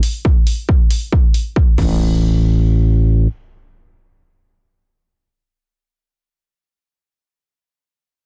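A punchy analog drum machine opens this dark, intense fragment of driving peak-time techno, its overdriven crash cymbal and hi-hat sitting low beneath a heavy, layered electronic kick that arrives at 0.2 seconds, tape-tinged and up front in a small room. At 1.8 seconds a thick, growling FM bass with a fast attack and sidechain pumping takes over as the drums fall away, sustaining until 3.3 seconds while an electronic impact lingers in the background. The master is dense and heavily limited.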